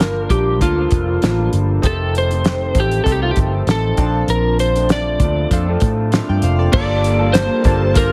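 Wistful and lonely, this short indie and bedroom pop cut in G minor moves at 98 BPM with a light swing, as a slide guitar played with fingerpicks carries the melody up front over glossy, chorused retro synth keys, a lo-fi, slightly broken-up guitar through a small old amp with warbly pitch drift, a round, foam-muted picked bass and a damped 70s drum kit with a fat snare and dark cymbals, before a swirling, phased string machine enters in the background at 6.8 seconds and a hollow group handclap sounds at 7.4 seconds, all framed by a heavily compressed, radio-like sound.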